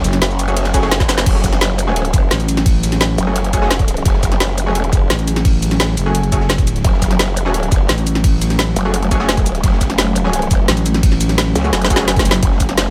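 Light studio reverb frames this tense, aggressive dark technical drum and bass at 172 BPM in F# minor, cut from a longer piece, where an up-front, wobbling growl bass with chorus and tube saturation is joined by a thick FM growl bass that returns at 2.3 s after a brief opening blip, an overdriven drum and bass kit with a woody snare and bright hats sits over a gritty, rolled-off breakbeat kit in the background, nasal, punchy orchestra-hit-like sawtooth stabs with digital delay arrive at 0.5 s, a knocking overdriven electronic kick enters at 0.7 s, drum fills punctuate the groove, and a detuned, granular swarming drone with sidechain pumping hovers beneath.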